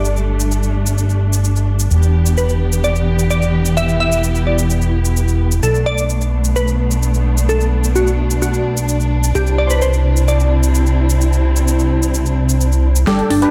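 Uplifting and euphoric, this excerpt of festival progressive house moves at 129 BPM in a straight 4/4, moving through Gsus2, Em7, Bm7 and Cadd9. A glassy wavetable pluck carries the melody from G3 to E5, its crystalline, decaying notes thickened by chorus and tape echo, while a dark symphonic string section holds lush, bowed chords underneath with sidechain pumping. A fat analog bass sits up front, thick and mellow with a filter sweep and sidechain pumping, and a big-room dance kit supplies a huge overdriven snare, metallic hats and shaker, all high-passed. At 13.1 s a drum fill arrives as a nasal unison lead adds brief arpeggios, a bright, detuned supersaw lead punches in with a low-passed riff, and a very quiet electronic kick hits briefly. A faint riser enters at 13.3 s, set in light digital ambience.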